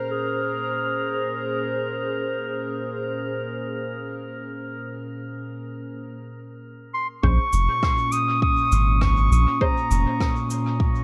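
Hazy and meditative, this ambient dub passage, cut from a longer piece, moves at 101 BPM in Bb minor with a gentle swung sixteenth feel, resting on a Bbm9 chord. A warbling, nostalgic tape-like pad with chorus and built-in reverb sustains chords throughout, joined at first by a glassy texture of drifting overtones until 6.0 seconds. A mellow, classical-style clarinet carries the melody up front, opening the excerpt and returning from 6.9 seconds, its lines trailed by dub echo. At 7.2 seconds the groove arrives: a deep, round sub bass with tube saturation, a layered electronic kick, and muted, phased chord stabs with short plucked decays. From 7.5 seconds a faint cabasa and rim click played with brushes, filtered and echoed, fills in the background. The mix is echo-heavy with light reverb and tape saturation, giving the whole a soft, lo-fi haze.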